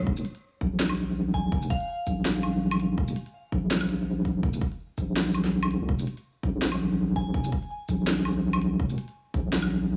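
A deep, wobbling bass dominates this dark, spacious passage of half-time drum and bass, its square-and-sine tone detuned and thickened by chorus, compressed and sustained up front in the low register. An electronic kick with a hard-clipped punch sits close in the mix beside a layered, produced kit of cracking snare, crisp hats, shaker and woodblock, the kit carrying a tape-softened edge and a touch of studio ambience. The groove swings lightly on the sixteenths within its half-time feel. A glassy FM bell flickers in high above at 1.3 seconds and again at 7.2 seconds, its crystalline, decaying tone smeared with chorus, vintage 12-bit sampler grit and analog delay. The whole recording has a dry, gritty hardware character with transformer saturation and a small room around it, and it is cut from a longer piece.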